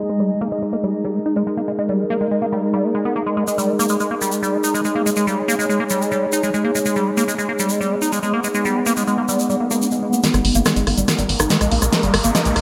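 A squelchy, resonant liquid acid bass leads this hypnotic, driving psychedelic trance passage, its riff saturated and run through phaser and dub echo while a filter sweep shapes it from the start. Beneath it, a swarming, nasal drone holds tense sustained chords that evolve under their own filter sweep, and a warbling, lo-fi tape-like pad adds a nostalgic texture with chorus and ring modulation. A grainy, bright egg shaker joins at 3.5 seconds. At 10.2 seconds the piece shifts into a build-up, as a layered big-room electronic drum kit with a huge, up-front snare plays a fill on hi-hat, rim click and snare. Moments later, at 10.3 seconds, a tight, punchy sequencer bass adds dark, plucked low notes. A riser creeps in from the background at 11.1 seconds as the passage, cut from a longer track, pushes forward inside a lush hall reverb.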